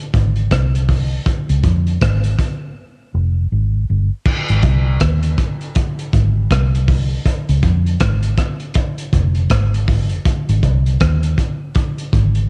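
Roots reggae in Ab major at a laid-back 80 BPM, with a swung sixteenth-note feel that gives this short excerpt from a longer piece an easy, unhurried sway. A vintage muted fingered electric bass sits up front throughout, its foam-muted, round tone dark and amped as it moves between F1 and F2. Alongside it, a crunchy breakbeat drum kit with a punchy kick, rim click, hi-hat and dusky crash cymbal sounds saturated and gritty, its rolled-off top coloured by cassette tape. The opening passage gives way to a break from 2.8 to 4.3 seconds before a new section carries the groove through to 12.5 seconds. The whole thing has a dry, close, home-recorded character, with lossy compression artefacts adding to its lo-fi charm.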